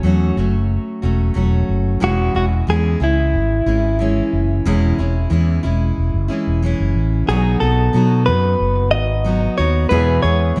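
A clean, compressed electric guitar, recorded direct with spring reverb, carries the melody from 2.0 s in this carefree, heartfelt acoustic pop excerpt, over a full-bodied picked dreadnought acoustic guitar and an amped, up-front fretless bass, while a polished concert grand piano with audible action noise joins in the background at 7.3 s, in a dark, lightly reverberant production that moves from F#m and C#m7/E to B and E.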